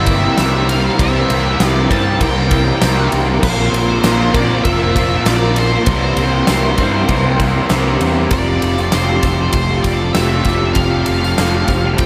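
Hazy and wistful, this cut from a longer shoegaze and dream pop rock piece moves at 98 BPM in C mixolydian, its C7 and Bbsus2 chords settling onto Fadd9 at 8.3 seconds, all set in a dreamy mix soaked in a huge ambient reverb. An octave-fuzz lead guitar carries the melody with distortion and diffuse ambient delay over a background wall of riffing guitars: a thick, dark fuzz part with ensemble chorus, one overdriven guitar with reverse reverb, and a double-tracked overdriven guitar with phaser that stops at 8.3 seconds. Beneath them, a very quiet lo-fi guitar through a small old amp fingers arpeggios, a mellow vintage string machine holds soft viola chords, a round, punchy fingered bass anchors the low end, and a huge arena drum kit with a fat snare and bright cymbals sits up front beside a jingly, close tambourine.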